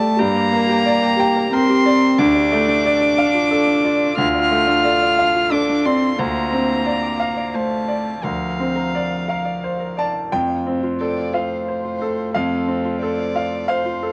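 Intimate and tender, this neoclassical piece for piano and strings moves in a rubato three-beat pulse and is cut from a longer work. A single bowed violin carries the melody up front, its sul tasto tone warm and close with light vibrato, a soft attack and a smooth top, and it carries a cassette tape colouring. Beneath it, one cello plays a second line, also bowed sul tasto, with a pure, floating quality. A bright concert grand piano sits forward with a brilliant, open sound, deep bass and short sustain as it supplies the accompaniment, while a fingerpicked Celtic harp rings out arpeggios in the background. The harmony passes from Gmadd9 through Dm and Bbadd9/D before arriving on F at 10.3 seconds, where a new section begins, all set in a moderate small room with the character of a home cassette recording.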